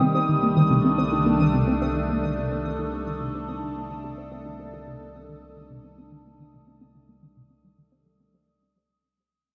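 A dreamy mix soaked in plate reverb opens this cosmic, mysterious fragment of sequencer-driven space music, cut from a longer piece and fading out across its full 8.5 seconds over a single Cm7 chord. Up front, a phased analog pad holds swirling, mellow sustained chords, its detuned sawtooth tone thickened with chorus. Beside it, a resonant blip pluck repeats a squelchy, bright riff with a fast attack and short decay, colored by ring modulation, phaser and tape echo, while a filter sweep moves over the arpeggiated synth sound. High above, a pulsing gated texture adds a tempo-synced, detuned shimmer bathed in chorus and its own reverb. Low in the mix, an analog drone enters at 0.4 seconds as an evolving, pulse-width-modulated bass tone with a long release.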